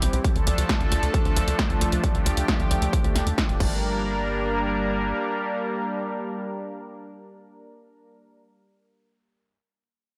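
A lush, detuned unison pad with chorus and sidechain pumping opens this bittersweet, soaring uplifting trance excerpt at 134 BPM in G minor, joined from the start by a tight, nasal sequencer bass with a plucky filter and an overdriven analog drum machine of crash, hi-hat and punchy snare, with a layered electronic kick entering at 0.2 seconds. The drums drop out at 3.7 seconds as the harmony moves from D minor to G minor, and the bass stops at 5.1 seconds. This leaves the bright, up-front pad sustaining alone under light reverb until 8.2 seconds.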